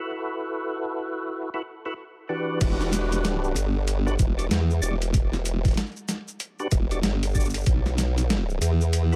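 Swaggering and gritty, this glitch hop excerpt at 95 BPM in E minor, swung on the 16ths, opens on fat, clicky tonewheel organ stabs colored by overdrive, chorus vibrato, a slow rotary speaker, tape echo and sidechain pumping, before the drop at 2.6 s brings in a saturated formant-sweep wobble bass with chorus, a compressed, overdriven sampler-style boom bap kit of crash, hi-hat, shaker and medium-tuned snare, and a thumpy, up-front electronic kick that runs until 7.8 s, set in a dry mix that moves from Em7 to Bsus4.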